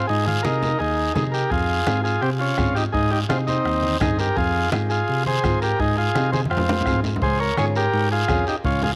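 Light reverb and a studio ambience surround this driving, passionate cumbia, cut from a longer piece. Up front, a vintage, buzzy combo organ carries the melody through tape echo, while a clean tine electric piano, heard through its built-in speakers, holds down the bass line. Close, dry congas with low-tuned, ringing heads and soft hands sit in the background beside a raspy guiro, and a bombo struck with a soft beater joins at 1.5 seconds. A small, woody nylon-string guitar with old strings adds fingerpicked accompaniment in the background, its tone warm and acoustic. The harmony sways between Ab and F minor until a drum fill at 6.3 seconds leads into a new section that opens on Db at 7.2 seconds.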